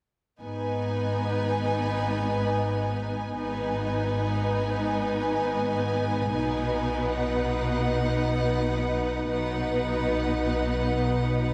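Epic and dark, this cinematic string passage unfolds in free time in G# minor, cut from a longer piece. Violins, violas, cellos and double basses all enter together at 0.4 s and sustain through 11.5 s, moving from a G# minor chord to B major at 6.4 s. The violin section carries a second line, bowed with a focused vibrato and placed up front, while the violas supply lush accompaniment just as close to the ear. Beneath them, the cellos add a rich bowed bass and the double basses anchor the lowest register with a clear, steady tone. A concert hall reverb lends the ensemble a spacious, resonant depth that heightens its brooding grandeur.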